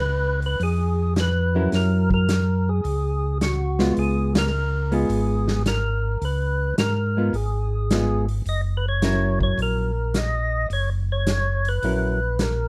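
A percussive tonewheel organ carries the melody with a fat, lightly overdriven tone and third-harmonic percussion, its slow rotary speaker adding motion to this swinging, greasy soul jazz organ trio at 107 BPM in Db mixolydian, moving between Db7 and Gb7. A second, mellow tonewheel organ holds the bass with a round, clean sound and audible key click, while a vintage drum kit with dark cymbals, a tight kick and a medium-tuned snare joins at 0.4 s, and a dusky, fingered hollow-body jazz guitar comps from 1.6 s. The band hits an accent at 4.3 s in this short cut from a longer piece, set in light reverb.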